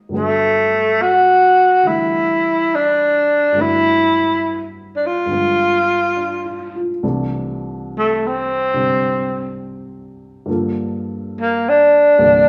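A wet, large studio reverb with a 1.2-second decay surrounds this late-night jazz excerpt, recorded as a band playing live in one room. At a slow 70 BPM in 4/4 with a gentle swing on the eighth notes, a dark baby grand piano lays down mellow accompaniment from the low bass up into the middle register, its short sustain and audible action noise adding close, intimate detail. Just after it, from 0.2 seconds, a breathy tenor saxophone sits up front with the melody, its whispered subtone, soft attacks, scooped notes and vibrato giving it a vintage character. The harmony moves from Gmaj9 to G7b9 in G major, then shifts to C major at 7.0 seconds, where the saxophone takes a solo over C69 and Gm9. The piano stays well behind the horn throughout, keeping the mood hushed and personal.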